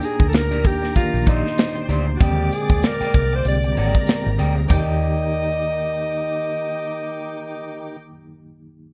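Lush 1970s-style soul in Eb major at 96 BPM, with a gentle 16th-note swing and a romantic, smooth mood, cut from a longer piece. An up-front, close-miked alto saxophone carries the melody with vibrato and a soft attack, its tone given a slapback echo, while a bright, nasal string section plays a second line with light vibrato. A worn, slightly out-of-tune electric piano adds accompaniment with fast tremolo and light overdrive, and a fat tonewheel organ holds sustained chords in the background through a slow rotary speaker, with audible key click and chorus vibrato. A dark, slightly broken-up electric guitar plays a lo-fi riff, the foam-muted bass sits round and punchy underneath, and a polished acoustic drum kit with a punchy kick drives the groove alongside a very quiet, jingly tambourine until the drums and tambourine stop around 5.0 seconds. The harmony moves from Ebmaj7 to Bb13 at 2.2 seconds and back to Ebmaj7 at 4.7 seconds, all wrapped in a dark, small-room production.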